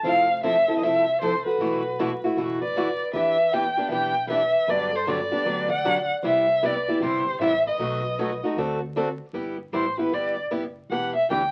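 A bowed violin, a pair of picked steel-string guitars and a plucked upright bass open together in this playful, lively gypsy-jazz fragment, cut from a longer piece and swinging in four. Up front, the violin carries the melody with vibrato and sliding portamento, sounding expressive yet slightly distant, and it takes a solo from 9.3 seconds. A bright, boxy parlour guitar with fresh strings and audible finger squeak plays the accompaniment, while a warm dreadnought guitar in the background adds a second line until 8.4 seconds. Beneath them, the gut-strung bass sits low in the mix with a woody, dark, thumpy tone. The chords move from Fmaj7 through B7 and D7 to G6 and Em7, and the whole performance is heard through a small room's moderate reverb and the crackle of a very old 78 rpm record.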